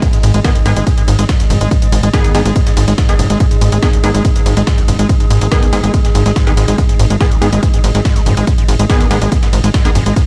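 Driving peak-time techno in G# minor at 142 BPM, this dark, industrial excerpt rides on a heavy, up-front electronic kick and a tight, nasal sequencer bass with a punchy filter pluck, while a squelchy, distorted acid bass riff with a resonant filter sweep sits further back. A techno kit adds tape-toned hats and ride cymbal, and a sampler-style breakbeat kit contributes pitched-up, compressed hats and a high-tuned snare, with sidechain pumping breathing through the hats, bass and synth layers. Behind them an eerie, metallic FM drone warbles with chorus and reverb, and an aggressive, bright rave stab, thick with detuned unison and ring modulation, adds delay and reverb over a dry, loud mix that holds on G#m throughout.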